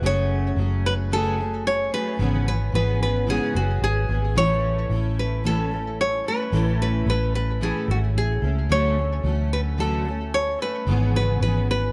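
Lightly reverberant, this sunny, carefree acoustic pop excerpt at 111 BPM in A major sets a bright, deep classical nylon-string guitar melody with tape echo over a double-tracked, full-bodied fingerpicked jumbo steel-string guitar with fresh strings and a dark, round, foam-muted vintage fingered electric bass, all up front, as the chords move from F#madd9 through C#m7/G# and A to Dmaj7.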